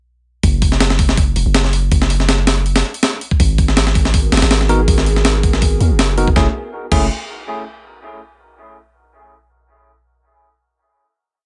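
A dry, dull-topped recording with a faint mains hum carries this short, frenetic and atmospheric jungle-flavoured drum and bass piece at 162 BPM, where a gritty, compressed, heavily chopped breakbeat with a thumpy kick and high-tuned snare sits up front over deep, long gliding 808-style sine bass from 0.4 seconds, a warbling, lo-fi, nostalgic tape-like pad with chorus and phaser hovers in the background from 4.0 seconds, and a barky, bell-like electric piano adds sparse chord stabs through dub echo from 4.7 seconds as the harmony moves from G#m9 to a final F#m9.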